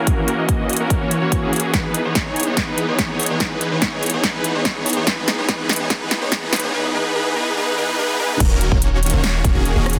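Huge, detuned supersaw chords sit up front in this dreamy, emotional future bass excerpt at 144 BPM in 4/4 with a half-time feel. They carry the riff from the very start, bright and airy, shaped by sidechain pumping, delay and a low-pass filter that sweeps through the build-up. The harmony moves from F#7 to Emaj7 before settling on D#m7 when the drop lands at 8.4 seconds. A big-room dance drum kit with a punchy, softly clipped snare, metallic hi-hats, rim clicks and crash cymbal plays alongside a layered electronic kick, both set in small room ambience, and the kit adds a drum fill during the build. At the drop a deep, boomy 808-style bass enters on D#1, its mellow sine tone with a noise layer pumping under sidechain. A lush hall reverb surrounds the mix, and the master is dense and heavily limited.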